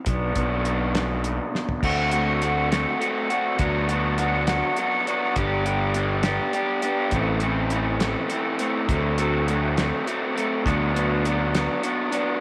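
A raw, lo-fi garage guitar riff, overdriven and double-tracked up front, opens this carefree, upbeat indie rock piece cut from a longer work, joined at 0.1 seconds by a punchy, fuzzed fingered electric bass and a cloth-damped, thuddy acoustic drum kit with dark cymbals, a tight kick and a rolled-off top; a drum fill at 1.6 seconds leads into a straight-feel 68 BPM 6/8 stretch that moves from Bm through D7, G and Am, all set in a small room with light reverb.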